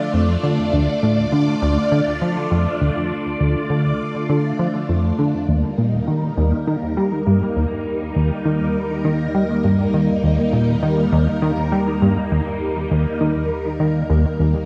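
A phased string machine opens with swirling, vintage sustained chords under ensemble chorus and phaser, joined almost at once by a punchy, funky analog bass riff with a sawtooth bite, bathed in lush chorus and analog delay. This cosmic, luminous fragment of sequencer-driven space music in Eb lydian moves at 101 BPM in a straight 4/4, shifting from Dm to Eb at 5.5 seconds as a round sine sub bass fades in deep in the background. A wet echo-chamber reverb with a 2.3-second tail gives the echo-heavy mix its spacious glow.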